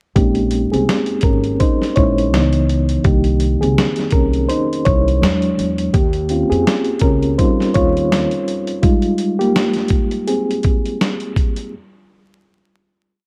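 Melancholic and hazy, this short lo-fi hip hop piece rides a lightly swung, laid-back beat from a gritty, compressed sampler-style drum kit, with a thumpy kick, medium-tuned snare and sixteenth-note hats sitting up front. A reedy, mellow electric piano with medium tremolo pushes spread-voiced chords like a sampled loop and carries the solo throughout, moving through extended harmonies from Bbm11 to Abmaj13/G. Beneath it, a woody, growly pizzicato upright bass plays a sparse line with slides and chromatic approach notes until 8.3 s, while light reverb and vinyl crackle add to the dusty haze.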